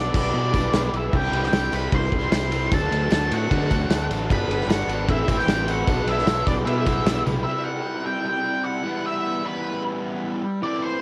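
Cool and restless, this indie rock excerpt drives at 152 BPM in a straight 4/4, moving from Em7/B through C, D7 and Gmaj7 before settling back on Em. Up front, a dark octave-fuzz lead guitar carries the melody in a high register, coloured by cassette tape and tape echo, while a very quiet, brilliant trumpet with vibrato adds a forceful second line until 7.2 seconds. Two guitars hold the riffs underneath: a compressed fuzz guitar and a raw, overdriven garage guitar with subtle chorus sitting in the background. A growling fingered bass, punchy and overdriven, anchors the low end beside a loose, tight-kicked drum kit in a pumping small room, with a jingly tambourine far back in a large space. A drum fill at 7.3 seconds ends the rhythm section's run, and from 7.4 seconds the three guitars carry on alone over C and Em, all steeped in a lo-fi home-cassette sound.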